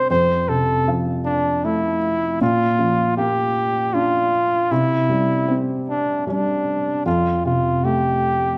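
A gentle waltz lilt in three, played with a straight feel, carries this short lullaby cut from a longer piece, and its mood is gentle and innocent. A flugelhorn sings the melody from start to finish, its tone soft in attack with a light vibrato and scooped notes that give the line a relaxed jazz inflection as it stands up front as the solo voice. Beneath it, a felt-muted upright piano supplies the accompaniment throughout, its thick felt making the sound mellow and intimate while staying close and present. The harmony moves from F to Bb and then to C before settling on an open Fadd9 as a new section begins at 7.1 seconds. A moderate recital hall reverb surrounds both instruments, and the tuning sits slightly low at A4 = 438 Hz.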